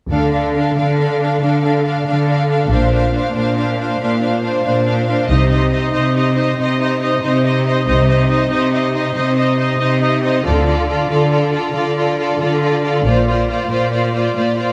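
In a straight 12/8 at 93 BPM, this relentless, epic cinematic passage builds over Dm, Bbadd9 and Cm, tuned to A4 = 439 Hz and taken from a longer piece. A clear, distant violin section carries the intense melody with vibrato while a warm, focused second violin section adds a smooth-topped line, and a lush viola section fills the accompaniment. Beneath them an up-front, rich cello section and an even, distant double bass section share the bass until the basses drop out at 13.5 s, all bowed in a moderate concert hall reverb.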